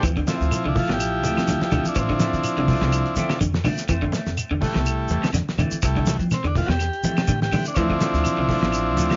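A lightly swung sixteenth-note groove in four drives this hypnotic, funky afrobeat excerpt, anchored by a damped 70s drum kit with a fat snare, tight kick and hi-hat, its dry, dark tone rolled off at the top. The buzzy transistor combo organ sits up front and takes the solo throughout, its light vibrato giving the line a vintage shimmer, while a woody, thumpy upright bass plucks gut strings underneath. In the background, a clean electric guitar picks arpeggios through spring reverb, and a hollow-body semi-hollow electric guitar adds stabs coloured by lush chorus and tape echo. Grainy shekere, band-limited claves and low-tuned, soft-handed congas, which join at 0.3 s, fill out the percussion. The harmony moves from Dm7 to Fmaj7 and back, and the whole home cassette recording has a dull, muffled sheen with light room reverb.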